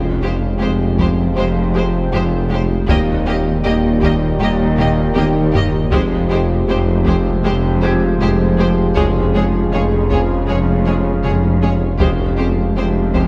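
This excerpt of a vast, tense hybrid orchestral and electronic film score in F minor at 79 BPM opens on a low bed of rich bowed cellos and double basses, a round sine sub bass and a roomy tuba. Above them, bright trombones, very quiet dark French horns and a deep, moody ambient pad hold sustained chords, while a warbling lo-fi pluck arpeggiates and a felt-muted upright piano adds soft texture with audible action noise. From 0.2 s a far-off studio violin section carries a vibrato melody over a lush second violin line and intense violas, and from 1.0 s distant taiko drums strike with hard sticks, including a fill early on. The chords move among Fmadd9, Eb and Db/F in a moderate scoring-stage reverb, and at 12.0 s the piano stops as a barely audible electronic riser enters.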